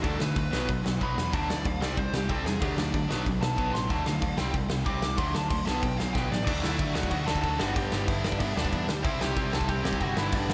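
Rebellious and upbeat, this punk rock excerpt opens with a dark, smooth overdriven lead guitar taking a solo with tape echo over two bright, crunchy rhythm guitars with slapback echo in the background, a growly picked electric bass and an up-front big rock drum kit with a punchy kick and bright cymbals, whose fill at 6.2 seconds leads into a new section at 6.5 seconds, all set in a lush hall reverb that gives it a big arena sound.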